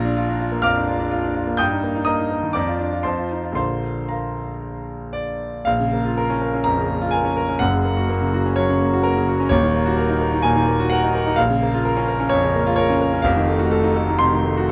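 Heard up close with detailed microphones and very little reverb, a clear, natural concert grand sits up front, its deep bass anchoring the sound. This short passage from a longer virtuoso classical piano study is sparkling and heroic, played solo with rubato across a range that reaches from the low bass to the high treble. The opening phrase settles on its home chord, then at 5.7 s a new section turns toward darker harmony before closing on a tense dominant chord at 13.2 s.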